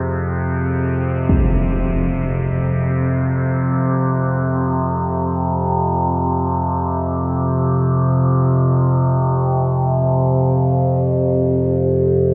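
Ominous and unsettling, this dark ambient drone excerpt centres on an up-front, resonant drone with evolving, moving overtones, its sawtooth and sine tones given chorus and built-in reverb, with a slow attack and long release across the low register. Beneath it, a bronze singing bowl struck with a felt mallet rings barely audible, metallic and meditative with slow beating. A huge, bright impact, muffled by a low-pass filter, hits at 1.3 seconds, and the whole sits in a wet cathedral reverb.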